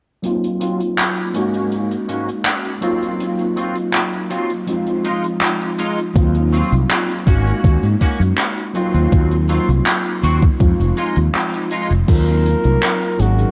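A nostalgic, melancholic vaporwave fragment in Eb dorian at 81 BPM opens at 0.2 seconds with a mellow tine electric piano, bathed in chorus and tape echo. It sits over an airy open jazz kit of dark cymbals, hi-hat, handclaps and crash in gated reverb, while a bright, twangy clean electric guitar riff moves through a filter sweep, 12-bit sampler grit and echo. At 6.2 seconds a round, punchy fretless bass and a thumpy, overdriven electronic kick arrive up front over Ebm69, Ab9sus4 and Fm7 chords, and at 12.1 seconds a jazz-style flugelhorn takes a brief solo, the whole mix carrying light small-room reverb and a cassette-tape character.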